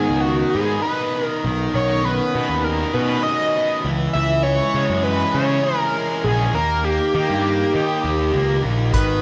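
Indie rock at 100 BPM in 4/4, upbeat yet wistful and cut from a longer piece: a screaming, detuned sawtooth synth lead with vibrato carries the melody at the front of the mix, over a thick, bright fuzz guitar riff and a twangy, slightly broken-up electric guitar in the background, while a round, dark fuzz bass sits up front through G#m, Badd9, C#m and D#, the band playing live in one room with moderate large studio reverb, until an airy acoustic drum kit played with bundle sticks appears only briefly at 8.9 s with hi-hat and a punchy kick.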